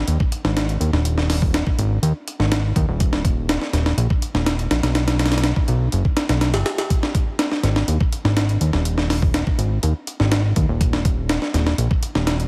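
Breakbeat in G# minor at 123 BPM, this energetic, gritty excerpt pairs a fat analog bass with a sampler-style breakbeat drum kit, both placed up front. The bass, detuned and tube-saturated, blends sawtooth and square-wave tones with a fast-attack filter pluck and sustained notes from D#1 to D#2, while the pitched-up kit brings a thumpy kick, high-tuned snare and hi-hat with tape-warm compression and studio reverb. Light digital ambience surrounds a heavily compressed, radio-like sound across the single 12.5-second section.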